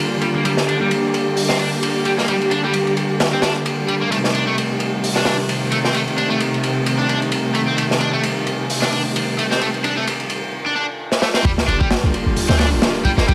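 Gritty and swaggering, this G minor breakbeat cut at 131 BPM sets a rich, vibrato-laden string section holding sustained chords under sidechain pumping and a low-pass filter, while a bright, double-tracked overdriven guitar riff with tube saturation, 12-bit sampler grit and tape echo enters at 0.2 seconds alongside a crunchy, mid-forward acoustic breakbeat kit with dark cymbals and a tight kick. A drum fill at 11.1 seconds leads into the drop at 11.4 seconds, where a deep, boomy 808-style sine bass arrives with an impact and the chords move to Gm7. A very quiet downlifter and sub drop bookend the passage, and the whole excerpt sits in a studio room reverb dusted with vinyl crackle.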